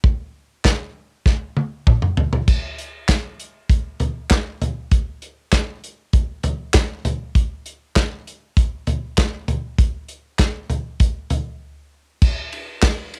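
Warm and anthemic, this straight 4/4 pop excerpt features only a natural country drum kit up front in a small room, with a punchy kick, medium-tuned snare, dark crash and ride cymbals, hi-hat, toms and handclaps, a drum fill at 1.3 seconds and a brief break at 11.6 seconds, all coloured by cassette tape and light reverb in a home-recorded sound.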